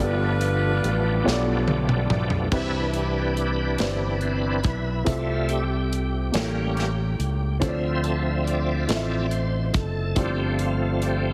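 Hopeful and reverent, this slow gospel excerpt moves at 47 BPM in a straight 6/8, settling in C major. A warm, jazz-style saxophone section opens with the melody through an analog delay but drops out by 1.7 seconds, while a dark, woody upright piano with audible action noise and a slightly detuned, intimate character provides accompaniment throughout. A bright tonewheel organ holds full, shouting sustained chords with key click, chorus vibrato and a slow rotary speaker, then takes a solo from 2.5 seconds to the end. A fingered electric bass sits punchy and up front, and a modern studio drum kit with a punchy kick, medium-tuned snare and rolled-off top enters at 0.4 seconds, playing a fill just before the organ solo. The harmony moves from G9 through Cmaj7, Fmaj7/C, A7b9 and Dm7 to G7sus4, all set in a light, small room and pressed into a heavily compressed, radio-like sound.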